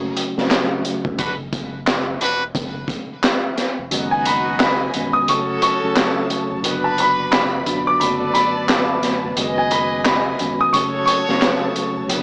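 Gritty and reflective, this swung boom-bap hip-hop excerpt at 88 BPM sets a mellow tine electric piano and a deep, round sub bass under a crunchy, saturated breakbeat kit with a high-tuned snare, handclaps and hi-hat, as tight, bright trumpet stabs with tape echo arrive at 1.2 seconds, and from 3.9 seconds the kick drops out while lush, bowed strings with vibrato and a woody upright piano melody enter over F#m and B6/F# chords, all heard through light reverb and a small-speaker sound.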